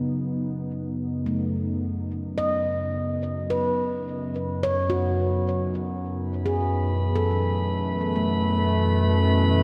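A vast, echoing space with long cathedral reverb surrounds this serene, reflective ambient fragment, cut from a longer piece, with a faint mains hum sitting underneath. A warbly, tape-like pad holds sustained chords throughout, its detuned sawtooth and triangle tones giving a nostalgic, lo-fi, vintage colour, thickened by chorus and its own reverb. Up front, a handpan plays ringing, meditative arpeggios on nitrided steel with soft fingertips, close-miked and full, and fed through a delay. At 6.5 seconds a drifting glass-harmonics texture enters in a higher register, its bright sine overtones glassy and calm under chorus and reverb. The harmony rests on B7 over F# before moving to F# minor add9 at 6.2 seconds.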